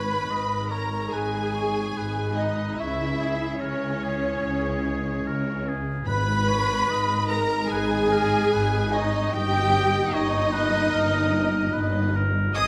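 A smooth violin section carries the melody of this moving, bittersweet film-score excerpt in G# harmonic minor, set at 73 BPM in a rubato 4/4 over chords moving from G#m through C#m and back to G#m before landing on D#/G. An airy silver flute, a warm solo oboe with light vibrato and a focused second violin line add second lines, while lush violas sit distant in the background and dark, roomy French horns hold sustained chords. Close, expressive cellos and soft-attack double basses anchor the bass, very quiet timpani strike at 0.0 and 6.1 seconds, and a reverberant scoring-stage ambience surrounds the ensemble.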